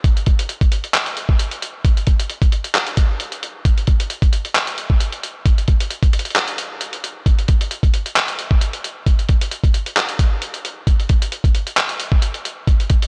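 A half-time hip hop groove in 4/4 at 133 BPM comes from a lo-fi, sampler-style drum kit of thumpy kick, hi-hat and handclaps, compressed, pitched down and muffled, sitting up front in a light reverb. The mood feels both wistful and triumphant, with a brief break from 6.4 to 7.3 seconds in this short section cut from a longer piece.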